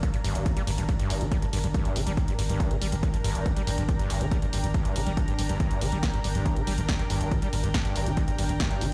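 Dark and driving, this short cut from a longer piece of peak-time techno runs in a straight 4/4 on a single G minor chord. A screaming acid line carries the riff, its squelchy, resonant sawtooth tone pushed through distortion, chorus, 12-bit sampler grit, sidechain pumping and dub echo while a filter sweep runs across the full 8.9 seconds. Beneath it, a growling 808-style bass holds a low G with buzzy overdrive, a low-pass filter and its own sidechain pumping. An analog electronic kick sits up front with a punchy, tape-warm thump, and a drum machine adds hi-hat and snare, the hats pumping with sidechain. Above, a granular pad drifts as a blurred, evolving cloud with a slow attack, long release and built-in reverb, while the whole mix sounds as if played on a big sound system in a bare stone room.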